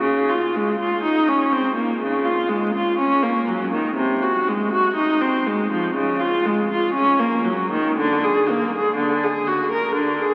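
A lone bowed viola opens at once, up front and focused, with vibrato and a smooth top as it moves between C3 and Bb4 in a solemn, introspective baroque-style suite movement. The pulse sits around 61 BPM in 4/4 but bends freely with rubato. A vast cathedral reverb lingers behind every phrase, and the crackle of a very old 78 rpm record colours the brief 10.3-second fragment, which is cut from a longer piece.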